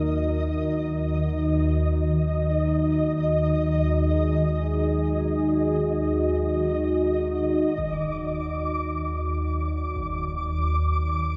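Dark ambient drone in free time, this ominous passage, cut from a longer piece, rests on a single E-flat minor chord for its full 11.4 seconds. Up front, a deep, rumbling drone rolls through the low register, coloured by a phaser and its own reverb. Above it, a moody pad of sustained chords warbles with a vintage, chorused sheen and a sub-octave weight. Higher still, a grainy, flickering texture adds a mellow granular shimmer. At 7.8 seconds a huge, bright impact enters, very quiet in the mix, and sounds until 10.2 seconds. The whole piece sits in a vast, echoing, cathedral-like space with a long, wet reverb tail.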